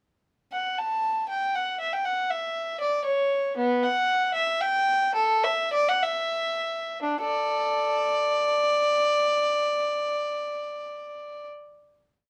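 Swaying in a rubato 6/8, this short, complete baroque-style suite movement for unaccompanied violin breathes with a serene, radiant calm. A single period-style violin carries everything from 0.5 seconds, its dark, nasal gut-string tone taking on a reedy edge as it plays a melody that leaps to bass notes. From 2.8 seconds the line gradually slows, easing toward a held final chord that rings from 7.0 to 11.0 seconds. The bowed instrument sits up front under close, detailed microphones, so the grain of the strings comes through clearly. A light reverb adds a gentle halo around the solo line.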